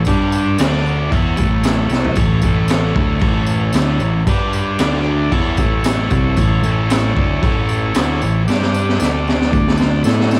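A gritty, lo-fi home cassette recording with light reverb captures a swaggering, rowdy garage rock excerpt in A major at 114 BPM, cut from a longer piece. Up front, a thick, double-tracked fuzz guitar riff cycles through G5, D5 and A over a raw, saturated drum kit with a boomy kick and high-tuned snare, while a growling, overdriven picked bass sits beneath. A buzzy vintage combo organ holds sustained chords through spring reverb, a jingly tambourine rattles close and dry, and the drums break into fills at 1.9 seconds and again from 8.5 seconds to the end.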